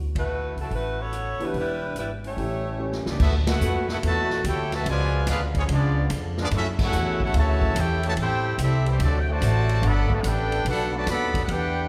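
Energetic and joyful, this big band swing excerpt in D major at 145 BPM opens with a woody pizzicato upright bass, a natural drum kit with a punchy kick and a bright, tight saxophone section carrying the melody, briefly joined by a polished grand piano, before a close-miked trumpet section takes the lead at 3.1 seconds over a distant, roomy trombone line and very quiet, dark trombone chords, heard in a moderate recital hall reverb.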